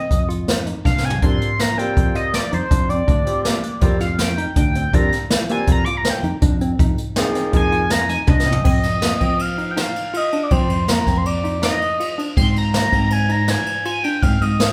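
An edgy, tearing sync lead with chorus and vibrato carries the melody up front in this brooding, tense progressive instrumental in 5/4, over tine-like thumb-piano-style synth pluck arpeggios, a growly, punchy fingered electric bass, a jazz kit played with brushes that has dark cymbals and a boomy kick, and a brilliant concert grand piano that accompanies from 1.2 to 7.8 seconds, all heard as a band playing live in a large studio room with moderate reverb.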